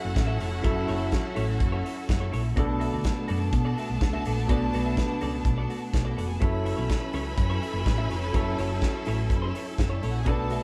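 Disco at 125 BPM with a sultry, danceable pull, this short cut moves from F#m7 to Bm7 as a round, dark hollow-body bass and a tight, up-front soul drum kit entering at 0.2 seconds drive beneath an intimate grand piano with audible action noise, a clean, compressed semi-hollow guitar, clear sustained string chords and a lush violin section whose vibrato and portamento sing a second line, all played live in a moderate stone room.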